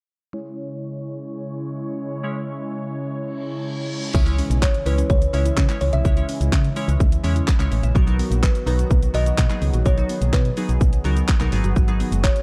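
Dance-pop at 126 BPM in C# dorian, confident and bittersweet, this short cut from a longer piece opens on a glassy wavetable pluck and a smooth, detuned analog pad with lush chorus, both pumping under sidechain as a filter sweep runs until a reverse cymbal and impact mark the arrival of the full groove at 4.1 seconds. There a house drum kit with a punchy kick and a round, dark FM bass sit up front, while a very quiet woody mallet-like synth pluck spins arpeggios and, from 4.6 seconds, a mellow kalimba carries the melody through tape echo over a barely audible crisp group handclap. The chords move from C#m to Bmaj7 and then G#m7 within a dark, digital ambience.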